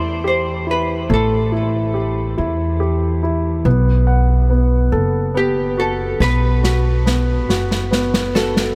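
A dreamy mix soaked in a huge ambient reverb surrounds this short excerpt of a swaying, heartfelt pop ballad in six-eight time. A clean, hollow-body archtop guitar, picked and amplified, carries the melody in a narrow middle register, its tone made lush by chorus and delay. A clear, polished baby grand piano sits up front with the accompaniment, moving from an A5 chord to a B5 chord at 3.7 seconds. A woody, dark upright bass, plucked on steel strings, anchors the low end with a present, close sound. At 6.2 seconds a medium-tuned acoustic snare drum played with bundle sticks enters for a drum fill that carries through to the close at 8.8 seconds.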